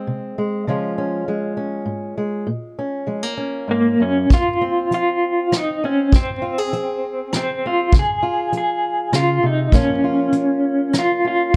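Nostalgic and tender, this acoustic folk-pop ballad sways in 3/4 with a straight feel and is cut from a longer piece. It opens at 0.0 s on a fingerpicked old ladder-braced acoustic guitar, woody and boxy with the dull ring of old strings, moving through Fm, Db and Bbm. At 3.7 s an electric guitar through a small old amp takes the melody, its picked tone dark, slightly broken-up and compressed, with a lo-fi tremolo shimmer. A vintage brush drum kit joins at 4.3 s with hi-hat, rim click and a punchy kick, sounding natural in a studio room. All three parts sit up front in a dark, warm production with little reverb.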